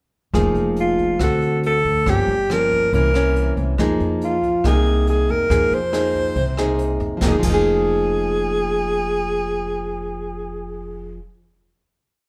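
Bossa nova in F minor at 140 BPM, melancholic and smooth, where a breathy, close-miked alto saxophone with vibrato sings motif-based phrases up front from 0.8 s over fingerpicked nylon-string guitar with thumb bass and syncopated plucked chords, woody pizzicato upright bass on dotted roots and fifths, and a brushed drum kit with dark cymbals and a boomy kick that drops out at 7.5 s, leaving the band to hold a final chord in a large studio room.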